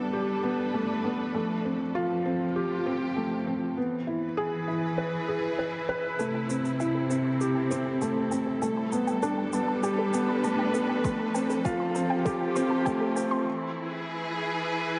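A straight 4/4 pulse at 99 BPM carries this hopeful, tender piano and strings electronica in C major, cut from a longer piece: a mellow felt-muted upright piano riff sits up front with digital delay, beside clear, focused sustained string chords that pump with sidechain, both blooming in shimmer reverb. From 6.2 s a build-up begins, bringing in dark, warbling arpeggios from a soft round pluck in the background, coloured by chorus and cassette tape under a filter sweep, along with a faint, filtered shaker, and a punchy electronic kick joins at 11.0 s. A break arrives at 13.5 s as the piano stops, all within a wet concert hall reverb while the chords move through Gadd9, Fadd9, E and C6.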